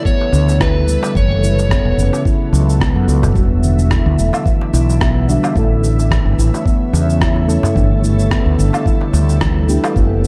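Set at 109 BPM in 4/4 with a 55% swing on the sixteenths, this organic downtempo excerpt moves with an unhurried, mystical and earthy sway. A compressed, thumpy electronic kick and a gritty, tape-softened kit of electronic cabasa, rim click and woodblock sit in a large-room sound, while a crisp, deep metal-shell darbuka, played with hard hands, stays in the background. The mellow fretless electric bass is the most forward part, dark, round and punchy beneath a ringing stainless-steel handpan whose meditative arpeggios carry sampler grit, low-pass filtering and tape echo. An ethereal, bright pad holds sustained chords throughout through ensemble chorus, phaser and its own reverb, pumping with the sidechain. A dark, overdriven slide guitar offers a brief melodic phrase at the opening until 2.2 seconds, and a soft, decaying chord stab with chorus and echo slips in at 3.3 seconds. The harmony moves from Gadd9 through F#m7, Em7 and A before returning to Gadd9, all within a lightly reverberant, dusky production.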